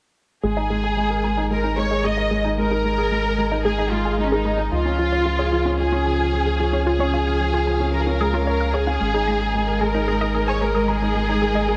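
Cinematic and moving, this excerpt of piano and strings electronica moves at 112 BPM in a straight 4/4, with a dark symphonic violin section carrying an expressive, vibrato-laden melody up front while a distant studio string section holds very quiet, lush sustained chords beneath it over G#sus2 and C#. A soft, felt-muted upright piano plays an intimate riff with audible action noise and a low-pass filter sweep, and a bright analog pluck spins chorused, delayed arpeggios in the background under its own filter sweep. A round, deep analog bass sits up front, and the whole blend rests in a lush hall reverb with a touch of small room ambience.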